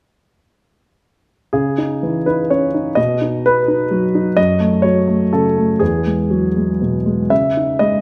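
A concert grand piano sits up front in a moderate recital hall, its reverb lingering for about 1.3 seconds around each short-sustained note. This brief, melancholic and intimate fragment of a longer neoclassical minimalist piece is in C# minor and 3/4 time, moving at 119-131 BPM with a rubato feel. The solo piano enters at 1.5 seconds and plays until 8.0 seconds, ranging from E2 to E5 with a warm tone and deep bass. Its harmony moves from C#madd9 through B, F#m and Eadd9 before settling back on C#madd9 at 7.3 seconds. The close, intimate sound gives the passage a private, melancholic character.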